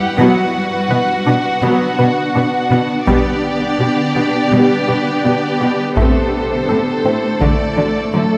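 Lush, vibrato-rich violins sit up front in this tense, brooding hybrid orchestral and electronic film-score build-up at 83 BPM, drifting over a cloudy, evolving granular pad with its own reverb, a round, nasal analog pluck arpeggiating in the background through chorus and delay, woody violas, and rich, smooth cellos moving through Bm, G/B, Am and D, while hard-stick taiko drums, compressed and saturated, enter at 3.1 s and a dark, soft-attack French horn section arrives at 8.1 s, all in a moderate scoring-stage reverb.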